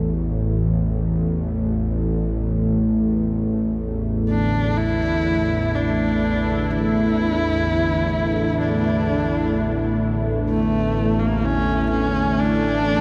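In a straight 4/4 pulse, this cavernous, unsettling dark ambient drone opens with a tense, sawtooth bowed-like drone up front and a bright, resonant sweeping pad holding sustained chords through chorus, before a husky horsehead fiddle enters at 4.3 s with vibrato and portamento through tape echo, the mix steeped in huge ambient reverb with a 7.5 s tail and dark production.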